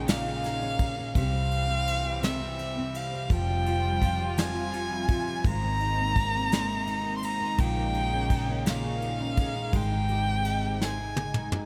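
In an intimate small-room sound, this tender, romantic pop ballad in six-eight sets an up-front, focused violin with vibrato and a touch of delay over a double-tracked, full-bodied fingerpicked steel-string acoustic guitar, reedy gut-string tones from a period-style studio string section holding sustained chords, a dark, round, foam-muted vintage electric bass, and a soft brush drum kit that closes with a fill from 10.8 seconds.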